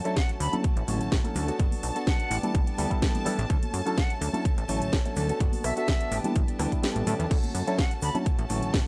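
Electric piano with phaser and 12-bit grit opens this sunny, feel-good filtered disco house excerpt at 126 BPM in D major alongside sustained chamber violins, a clean, direct-recorded guitar riff, tape-warm drums with cracking snare and metallic hats, and very quiet, soft-handed shaker and congas, before a bright, vibrato-laden concert flute melody with tape echo enters at 0.2 seconds over a punchy kick up front and a plucky, funky analog bass. Most parts of the dry, gritty mix pump from sidechain compression, and the kick drops out between 6.8 and 7.3 seconds.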